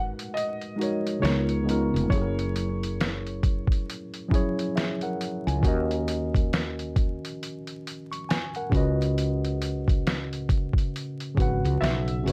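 The lo-fi sampler-style drum kit stands out most, sitting up front with a compressed, pitched-down, muffled sound, a thumpy kick, a medium-tuned snare and hi-hat that enter at 0.2 seconds in this nostalgic, reflective lo-fi hip hop cut from a longer piece. Set at a slow 68 BPM in 4/4 with a 60% swing on the sixteenths, the groove is carried by a woody fretless electric bass whose dark, growly, hollow-body tone stays low beneath everything from the start. A worn, slightly out-of-tune tine electric piano, also up front, supplies the chords through a cassette tape character, a low-pass filter and plate reverb, moving from G#m9 through C#13 and F#9 to D#m7 and C#7sus4. A felt-muted upright piano carries the brief melody, soft and intimate with audible action noise and a short sustain, appearing from 0.3 to 3.8 seconds and returning at 11.8 seconds, shaded by a low-pass filter, analog delay and plate reverb. 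Light reverb and a bed of vinyl crackle give the whole passage a dusty, lived-in atmosphere.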